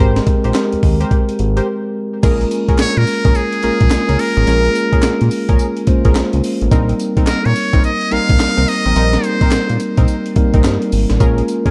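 A muted trumpet carries the melody from 2.8 to 9.8 s, its buzzy, breathy jazz tone lightly touched with vibrato and trailed by delay, in this punchy, slick new jack swing cut from a longer R&B piece. Beneath it, a mellow tine electric piano lays down chords while a funky, chorused sawtooth polysynth with a filter sweep adds stabs, all over a fat, nasal analog bass. A gritty, compressed sampler-style breakbeat kit with a thumpy kick, high-tuned snare, handclaps and tambourine sits up front in a dark, dry mix, with a brief break just before the second section.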